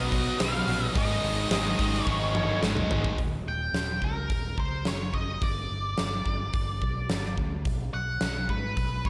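Light reverb and a small-room ambience surround this anthemic, cathartic stretch of quiet-loud alternative rock, cut from a longer piece, with a huge, up-front arena drum kit carrying a fat snare and punchy kick. A dark octave-fuzz lead guitar sings the melody throughout over a round, amped fingered bass, while a bright overdriven garage guitar, a scooped, double-tracked high-gain guitar and a dark fuzz guitar in the background stack a riff over B and Abm. That riff drops out at 3.2 s after a drum fill, leaving lead, bass and drums to push through Eb, G5 and B5.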